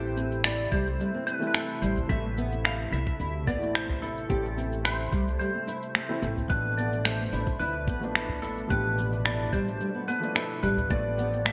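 A bright, twangy clean lap steel guitar carries the melody through this earthy, hypnotic organic downtempo excerpt at 109 BPM in A minor, its slide lines colored by digital delay over a shift from Am to Bm7b5/A at 6.5 seconds. Beneath it, a dark, thumb-plucked nylon-string guitar plays arpeggios with analog chorus, a woody pizzicato upright bass thumps along with sidechain pumping, and a soft felt-muted upright piano and a warbling vintage analog pad sit in the background. Up-front electronic shaker and finger snaps with gated reverb arrive at 0.2 seconds, a soft tape-toned electronic kick joins at 0.7 seconds, and a deep, dry udu murmurs from 2.0 seconds, all set in a lush hall with bright 1980s-style digital sheen.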